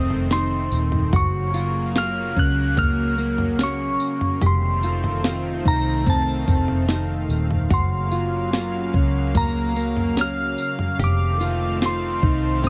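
Blissful and dreamy, this short dream pop excerpt drifts at 73 BPM in a straight 4/4, cut from a longer piece and moving between F7 and Gbmaj7 chords. A glassy, crystalline FM synth bell carries the melody high above, its warbling tone shimmering with chorus, tremolo and tape echo. Beneath it, a thick, detuned sawtooth pad holds sustained chords with a slow attack and long release, while a mellow, fingered electric guitar plays dark, compressed arpeggios bathed in lush chorus and tape echo. A foam-muted, picked electric bass gives a round, amped low end, and a sampler-style 12-bit drum machine enters at 0.1 seconds with a thumpy kick, medium-tuned snare, tambourine and toms, sitting up front with a tape-tinged character. Light reverb softens the whole mix into a hazy, floating space.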